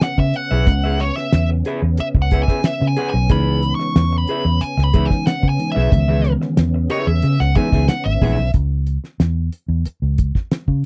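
Hypnotic, sly funk at 92 BPM in C# minor, cut from a longer piece, where a nasal, overdriven lead guitar with a parked wah solos over a C#m7 vamp alongside a slightly broken-up rhythm guitar, a tonewheel organ holding chords in the background with chorus vibrato and slow rotary speaker, a cloth-damped, thuddy drum kit with a fat snare and tight kick, and a round, foam-muted fingered bass up front, while a mellow tine electric piano adds stabs from 3.3 s and the guitars, organ and electric piano drop out around 8.5 s to leave drums and bass on C#m in a dry, close 1970s-style sound.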